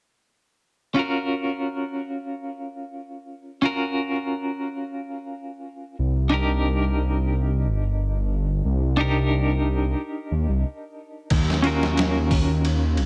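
A deep, rumbling detuned saw bass with tube saturation anchors this smoky, hypnotic trip hop excerpt at 90 BPM, entering at 6.0 seconds beneath a bright, twangy clean electric guitar that has been playing since 0.9 seconds through tremolo, a low-pass filter and tape echo over chords moving from Gbmaj7/Db to Cm7. After a brief break, a muffled, pitched-down sampler-style drum kit with a thumpy kick and overdrive arrives at 11.3 seconds on Ebm7, as a filter sweep washes over the guitar in this dry, up-front mix.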